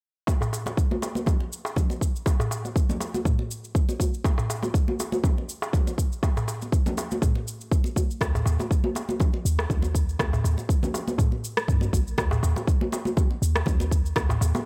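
A punchy, up-front electronic kick drives this earthy, spiritual afro house excerpt at 121 BPM in 4/4, with a gentle 54% swing on the sixteenths and a small-room ambience around it. Layered electronic shaker and rim click sit lower in the mix alongside ringing, saturated acoustic congas and a clay-shelled darbuka with natural skin and a warm, live-room character, both struck with hard hands. At 8.2 seconds a deep, boomy 808-style bass enters, a sine tone with a noise layer, fast attack and mellow decay, moving between Bb1 and G2 and pumping through sidechain compression. The percussion runs through the full excerpt as a single groove, giving it a hypnotic, ritual feel under a studio reverb.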